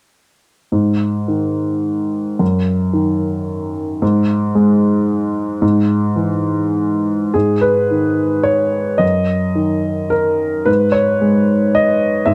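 Neoclassical minimalist piano in 3/4, tender and intimate, with a rubato feel that lets the phrases breathe. A lone upright piano plays from 0.7 to 12.3 seconds, its worn, woody, slightly detuned tone sitting up front with long sustain in light reverb, moving through chords such as D#m/F#, E/G# and G#m before settling on a rootless Emaj7/G#. Cut from a longer piece, it shifts into a second section at 7.3 seconds.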